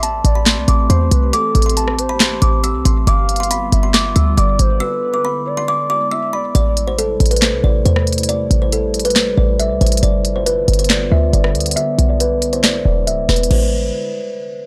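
Menacing and dark, this half-time trap excerpt in A minor at 138 BPM sets a woody, ringing kalimba melody with tape echo over a warbling lo-fi pad, a smooth gliding portamento lead that drops out at 6.5 seconds, a punchy, tight 808-style bass and an overdriven trap kit with sharp snare, crisp hats, handclaps and rim clicks, all captured as a dry, gritty hardware recording with a break at 4.8 seconds and a filter sweep from 6.5 seconds.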